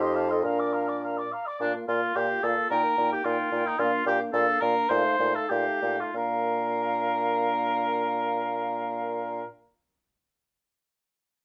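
In a rubato 2/4 at 90 to 112 BPM, this cheerful, lively excerpt from a quick classical-period movement for wind quintet in Bb major eases into a slowdown between 3.2 and 6.1 seconds. An airy, distant concert flute carries the melody with tongued, expressive vibrato, while a mellow oboe sits up front with the second line. A clear, close-miked clarinet stays in the background alongside a warm French horn, and the bassoon anchors the bass with light vibrato, all in a moderate studio reverb over chords moving from Bb through Eb/Bb and F7/Bb.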